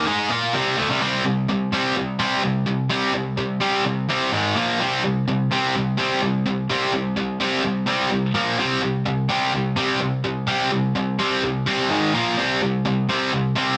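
A dense, heavily limited modern master with moderate studio reverb frames this driving, menacing rock excerpt in C minor at 127 BPM in a straight 4/4, tuned to A4 = 439 Hz. A lone distorted electric guitar, bright, picked and double-tracked, sits up front with overdrive, opening on a C minor chord before settling at 1.0 seconds into a C5 power chord. It then returns repeatedly to C5 after brief moves through Ab5 and Bb5 until the cut at 13.8 seconds.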